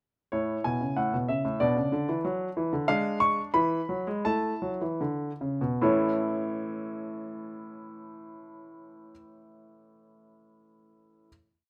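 Light reverb surrounds a clear, intimate grand piano that sits up front, with the natural sound of its action audible beneath the notes. This brief, complete classical-period sonatina in A major is cheerful and elegant, moving in 2/4 at roughly 73 to 95 BPM with a rubato feel. The solo piano spans A2 to C#6, setting a single-line melody over an independent bass line in counterpoint. The harmony moves from A through B minor and a diminished chord over A-flat to E, then resolves home to A, while the tempo slows between 2.2 and 5.8 seconds. From 5.8 seconds a final chord rings until 9.0 seconds, closing the piece.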